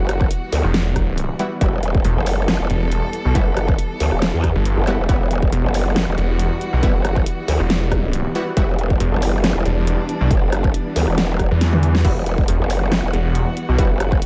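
Half-time drums at a slightly swung sixteenth-note feel drive this menacing, chaotic stretch of heavy wobble dubstep, with a punchy, layered electronic kick and a dubstep kit built around a huge snare, hi-hat, rim clicks, toms and crash, both re-recorded in a small room. Two up-front basses dominate the low end: a saturated, bright growl bass with chorus and overdrive that wobbles through a formant filter, and a snarling saw bass, detuned and distorted, that joins at 0.6 seconds. Above them a rich chamber string section holds bowed, vibrato-laden chords, pumping against the sidechain. A bold orchestra-hit-like synth stab cuts in from 1.4 seconds with a short, plucked decay, built-in reverb and digital delay, falls away, and returns at 12.0 seconds after a drum fill. A very quiet electronic zap flickers briefly, and the whole mix stays dry and close, as if lifted from a longer track.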